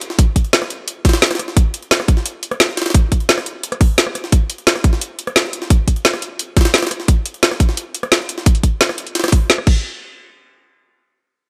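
This dark, futuristic stretch of technical drum and bass, cut from a longer piece, opens with two drum kits sounding together at 174 BPM in a straight 4/4. Up front, a layered electronic kit sets a woody snare, metallic hats, rim clicks and crash cymbals in a small room. Behind it, a compressed, pitched-up jungle sampler-style kit adds a gritty, high-tuned snare and hi-hats, high-pass filtered and set back in a large room. At 0.2 seconds a tight, tape-warm electronic kick joins at the front of the mix and carries on to 9.7 seconds. The overall sound is dry, with little reverb.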